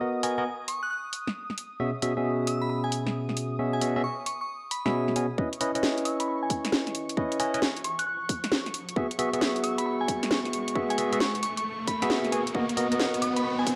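This soulful, moody two-step UK garage excerpt opens on a barky, up-front tine electric piano playing stabs through a low-pass filter and digital delay, over an airy, breathy pad that holds sustained chords softly in the background with chorus and sidechain pumping. At 134 BPM with a swung sixteenth-note feel in C# dorian, the harmony moves from Bmaj7 to E69/B, then C#m9 and F#9sus4 before returning to Bmaj7. Almost at once a glassy, crystalline FM synth bell carries the melody with fast-attack, decaying notes, while a garage drum kit adds a cracking snare and bright hats, both high-pass filtered. At 5.4 seconds a tight, layered electronic kick enters and a build-up begins, with filter sweeps on both the electric piano and the synth bell. An electronic riser joins at 7.0 seconds, and the dark production sits in a moderate digital room reverb.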